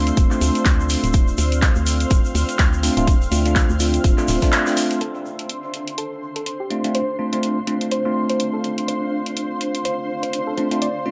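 An echo-heavy mix with moderate spring reverb frames this deep, hypnotic deep house excerpt at 124 BPM in D minor, swung on the 16ths and resting on a Dm7 chord. A bright, bell-like tine electric piano stabs up front through phaser, low-pass filter, tape echo and sidechain pumping, above a very quiet, moody ambient pad, a silky analog string pad with ensemble chorus and a cloudy, evolving granular pad, the latter two also pumping. A hollow, organ-like FM bass with sidechain pumping and a layered, punchy electronic kick anchor the low end until about 4.5 s, where the band hits an accent, while an analog drum machine's handclaps and hi-hat run throughout; a grainy tube shaker with tape echo and a faint, airy studio kit's hi-hat and snare stop by 5.0 s, when a soft, round pluck with subtle chorus and analog delay takes the melody.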